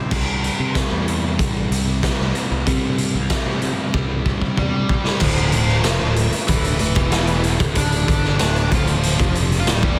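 A straight 4/4 pulse at 94 BPM drives this dark, cathartic quiet-loud alternative rock fragment, led by a punchy, gritty garage drum kit sitting up front in a bright stone room, with a growly picked bass and two very quiet guitar riffs, one crunchy and overdriven, the other a thick fuzz, moving from C to Dm. During a drum fill that begins at 3.9 seconds, an octave-fuzz lead guitar enters at 4.6 seconds with a distorted melody and slapback echo. At 5.2 seconds the section shifts, adding a very quiet, lush bowed string section with vibrato and a double-tracked distorted guitar riff, all pressed into a dense, heavily limited master with little reverb.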